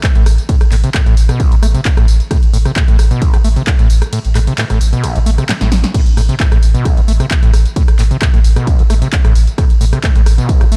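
A screaming, squelchy sawtooth acid riff with a resonant filter sweep, distortion, chorus and 12-bit sampler grit opens this dark, driving peak-time techno excerpt alongside a heavy, layered, tape-toned electronic kick and a punchy analog drum machine of snare, handclaps, hi-hat, ride, crash, rim click and tambourine, with a deep, round, overdriven sine sub bass entering a moment later, sidechain pumping on the acid line, the bass and the drum machine's hats, percussion and cymbals, a break from 4.1 to 5.9 seconds capped by a drum fill from 5.5 seconds, and a dry, dark mix throughout.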